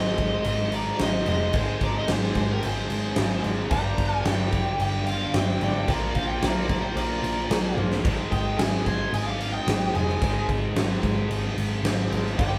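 A band playing live together in one room fills this hard rock excerpt, with a moderate studio reverb giving the sound a short, natural tail. The mood is aggressive and menacing, with a huge arena drum kit that sits up front from 0.2 s, with bright crash cymbals, a fat snare, a punchy kick and toms, and a drum fill at 7.8 s. Underneath, a hollow-body short-scale electric bass plays a dark, round, amped line, while two rhythm guitars share the riff: a scooped, high-gain distorted guitar with a bright edge, and an overdriven semi-hollow guitar tucked in the background. On top, a smooth overdriven lead guitar carries the melody with a warm, picked tone, joined by a dusky octave-fuzz lead guitar playing a second line further back in the mix. The harmony moves from Ab to Gm and Bb before settling on an Ab5 power chord, and the piece is cut from a longer performance.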